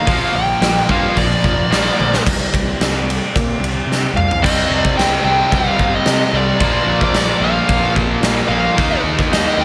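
A huge arena drum kit with a punchy kick sits up front in this heavy, driving hard rock excerpt, adding fills at 2.0 and 3.9 seconds, while a dark, smooth overdriven lead guitar with analog delay solos through the first 2.3 seconds over three bright, picked riffing guitars (one cranked and very quiet, one double-tracked and overdriven, one high-gain with slapback echo), a fuzzed, overdriven picked bass and a very quiet, brassy, detuned sawtooth pad with chorus, the mix bathed in a lush hall reverb for a big arena sound.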